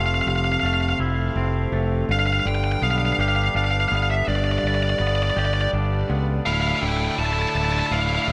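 Rock in 3/4 at 82 BPM, this brief, cathartic and cinematic fragment from a longer piece moves through Fmaj7 and G7 before arriving on Dmadd9 at 6.5 seconds. A dark, smooth overdriven lead guitar carries the melody up front, its line set with slapback echo and digital delay, while a bright, twangy clean electric guitar plays compressed, picked arpeggios under the same echo and delay. A growling fingered bass, overdriven and amped, sits forward in the mix, and a reedy, breathing hand-pumped harmonium holds sustained chords in the background. At 6.5 seconds a tight distorted guitar enters with a riff, adding bite to a build-up that runs to the close. A lush hall reverb gives the whole a big arena sound.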